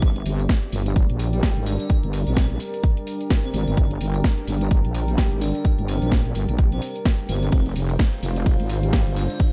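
Bass house at 128 BPM in G phrygian, with a bouncy, swaggering 16th-note swing, cut from a longer piece. A heavy, wobbling sawtooth bass sits up front from the start, its detuned unison tone saturated through tube saturation, compressed, thickened with chorus and pumping against the punchy, tape-tinged electronic kick. A house drum kit adds hi-hat, ride cymbal, tambourine and a cracking snare, re-recorded in a large room. In the background, an airy, dreamy lead carries the melody with a soft attack and vibrato, while a deep, moody analog pad enters at 1.1 seconds with slow-blooming chords under phaser and sidechain pumping. A warbling, nostalgic lo-fi pad with its own reverb hovers beneath, as the harmony moves from G minor to F minor at 7.5 seconds in a dark, warm digital mix.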